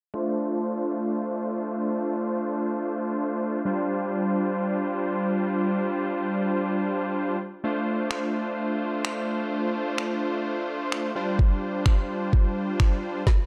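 A dark, lightly reverberant digital ambience frames this energetic yet bittersweet dance-pop excerpt at 128 BPM in D minor, tuned to A4 = 438 Hz, where a fat, detuned sawtooth polysynth with a low-pass filter sweep sustains Dm7 and G7sus4 chords on its own from 0.1 seconds until an up-front electronic R&B kit with a knocking kick, woody snare and finger snaps joins at 8.1 seconds.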